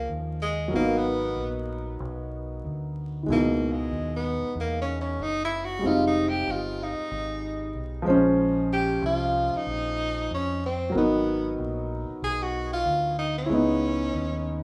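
Jazz-hop with a smoky, cool mood and a swung sixteenth-note feel, this short cut from a longer piece features a breathy tenor saxophone soloing up front across the whole 14.6 seconds, its subtone, vibrato and scooped notes trailed by plate reverb and analog delay. A dark, mellow grand piano sits close and intimate, its action noise audible and its tone vintage and smooth, comping through minor ninth chords beginning on a rootless Bbm9. Underneath, a deep, round, punchy dub-style fingered electric bass sits lower in the mix, while vinyl crackle and studio ambience give the rough home-demo sound a lived-in feel.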